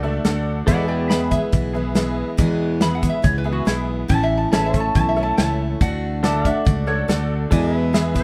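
A lap resonator guitar, played with a steel bar and fingerpicks, carries a metallic, nasal slide solo from 0.7 s through this short 8.2-second excerpt of down-home, heartfelt honky-tonk and classic country at 140 BPM in a straight 4/4. Beneath it, a pedal steel guitar holds sustained chords with a clean, compressed, twangy tone and volume swells, while a detuned, jangly vintage upright piano adds present accompaniment up high. A picked steel-string acoustic guitar with fresh strings rings out bright and full-bodied, finger squeak and all. The fingered electric bass sits up front, round and punchy, and a damped 70s drum kit enters at 0.2 s on hi-hat, tight kick and a medium-tuned snare, dry with a rolled-off top. The harmony moves from D to E, A, D and back to E, all set in a moderate studio reverb.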